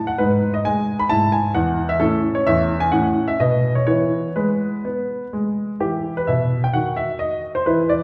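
A recital hall's wet reverb, with a 1.6-second decay, surrounds this recording, which is heard from further back in the room. This is a short, elegant and cheerful piece of a classical-period piano sonatina in E major, cut from a longer work and moving at a brisk 129 BPM in a straight 4/4. A single concert grand carries everything as a solo. Its tone is clear and natural, with a deep bass, short sustain and an up-front presence, across a range from E2 to B5. The opening phrase begins on a high G#5 and moves through E/G#, A and F#m/A before settling on E. At 5.8 seconds a second idea begins on E5 and colours the close with a D#m6 chord at 6.8 seconds.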